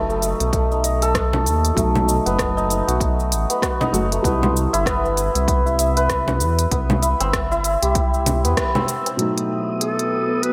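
Organic downtempo at 97 BPM in B phrygian dominant, meditative and earthy, with a swung groove moving between B7 and Cmaj7. Up front, a shimmering hammered santur plays arpeggios through a filter sweep with delay. It sits over a thick-felt upright piano, soft and intimate, alongside a round analog bass and a layered deep house kit of congas, smooth hats, rim click and shaker, plus a punchy electronic kick, with the piano and bass pumping against the beat. The bass drops out at 8.5 seconds, just before a band accent at 8.6 seconds, and the kick follows at 8.7 seconds. A breathy wind-like noise texture arrives at 9.4 seconds, and then a raspy, growling clarinet solo joins a blurred granular pad at 9.8 seconds, all within a moderate echo-chamber reverb.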